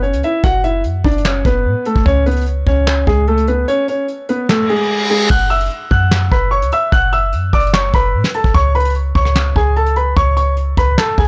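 An up-front concert grand piano with a natural, deep-bodied tone carries the melody in this dark, brooding excerpt of half-time trap hip hop at 148 BPM in F# minor, moving between F#5 and C#5 chords. Beneath it, a clean, boomy sine 808 bass with a fast attack and decaying notes sits under a soft brush kit of smooth, rolled-off character, with a fat snare, punchy kick, hi-hat, rim click, handclaps and crash. The kick drops out at 3.7 s and an electronic reverse cymbal enters at 4.6 s, leading into the second section at 5.3 s, and the whole recording has a dry, gritty small-room sound captured on cassette tape.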